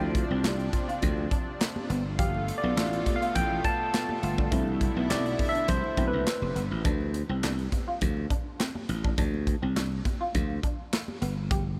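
Early-eighties boogie funk at 103 BPM in D dorian, with a slick, late-night mood. A barky, lightly overdriven tine electric piano takes a solo over a lush, detuned unison pad with chorus, while a growly, up-front slap bass, a punchy modern studio drum kit with handclaps, and very quiet high-tuned congas drive the groove beneath a twangy electric guitar riff with analog chorus set in the background. The piano and pad drop out at 6.8 seconds as the harmony moves to D7(no3), leaving bass, drums, congas and guitar in a dreamy mix soaked in a huge ambient reverb in this excerpt.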